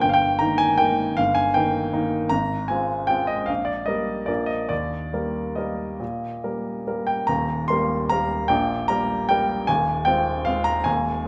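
A clear baby grand piano carries this solo classical waltz on its own, its polished tone sitting present and up front. The mood is sparkling and playful, with a lilting three-beat sway and a rubato feel that lets the pulse stretch and give. The piano ranges from deep bass notes at Eb1 up to a bright C6. An opening section runs until 7.3 seconds, where a contrasting second section takes over through the close at 11.3 seconds. A wet recital hall reverb wraps the instrument in a lingering sense of space, and the passage is cut from a longer piece.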